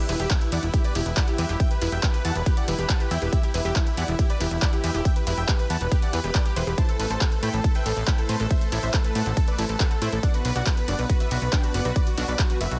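Euphoric and driving, this uplifting trance excerpt moves at 139 BPM in a straight 4/4, set in E minor and moving from Em to Amadd9 at 6.8 seconds and on to Bm at 10.2 seconds. A huge, thick supersaw lead carries the melody with vibrato, its compressed tone pumping under sidechain and trailed by digital delay. Beneath it, a very quiet, soft-attack supersaw pad holds sustained chords, while a bright, lush unison pluck sits in the background spinning arpeggios, also pumping and echoing through digital delay. A funky, up-front analog bass with a fast, decaying filter pluck anchors the low end, pumping with the sidechain. A dry, overdriven analog drum machine supplies handclaps, hi-hat and ride cymbal in a small room ambience from 0.1 seconds, and the punchy electronic kick joins it up front at 0.3 seconds, all wrapped in a digital ambience.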